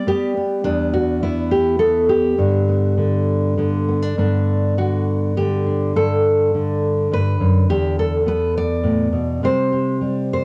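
Nostalgic and warm, this short cut from a longer folk piece features a solo fingerpicked nylon-string guitar with a full-bodied, deep classical tone from fresh strings; it sits up front, ranging from E2 to D5. The guitar plays in G major at 103 BPM in a rubato 3/4, tuned to A4 = 443 Hz, moving through G, E5 and C5 chords as its opening section repeats at 4.2 seconds, all carried by cassette-tape coloring and the snug, wet ambience of a home booth recording.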